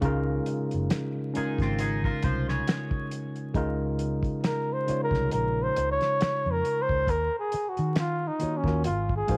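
A lightly swung 68 BPM 4/4 groove from a cloth-damped, thuddy drum kit with finger snaps, hi-hat, a fat snare and a tight kick sits under a round, foam-muted vintage fingered electric bass and a worn, slightly out-of-tune tine electric piano through a combo amp, setting a smooth, warm neo-soul R&B mood in Db major over Db69, Ebm9 and Ab7sus2 chords, as a twangy electric guitar at the edge of break-up with subtle chorus adds a second line from 1.4 to 3.5 s before a breathy, whispered flugelhorn with vibrato and scooped notes takes an intimate solo melody from 4.4 s, with light reverb, studio ambience and vinyl crackle around the mix.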